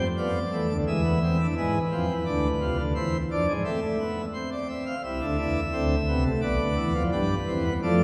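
Stately and joyful, this short excerpt from a longer baroque-style three-part fugue for solo pipe organ moves at 86 BPM in a straight 4/4, its full, brilliant plenum with mixtures and a romantic voicing sitting up front from B1 to F5 and passing through E, E7, Am, C and G/B as the music shifts into a new section at 5.1 seconds, all heard from further back in a church whose reverb lingers for 3.7 seconds.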